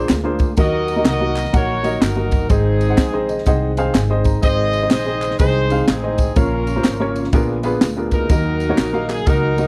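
Uplifting and reverent, this swung uptempo gospel excerpt puts a punchy horn section up front on the melody, beside a dark, intimate baby grand piano whose action noise is audible and which plays a fill from 3.0 to 4.4 seconds. A woody, thumpy upright bass and a crisp drum kit with a high-tuned snare, punchy kick and ride cymbal drive the groove, while a very quiet, lightly overdriven tonewheel organ with fast rotary shimmer holds sustained chords and soft handclaps and tambourine sit in the background. The sound is dry and close, like a 1970s studio recording.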